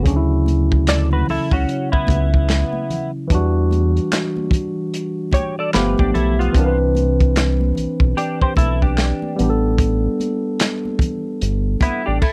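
Soulful and sensual, this brief neo-soul and R&B clip sets a barky, lightly overdriven tine electric piano over a deep, round analog bass and a crunchy, gritty breakbeat kit of kick, snare, hi-hat, handclaps and crash with dark cymbals. A dark, scooped semi-hollow guitar with analog chorus adds a clean second line, and very quiet, bright congas add a faint layer. Everything rides a swung sixteenth feel through lush ninth chords in a dry, close 1970s-style studio sound.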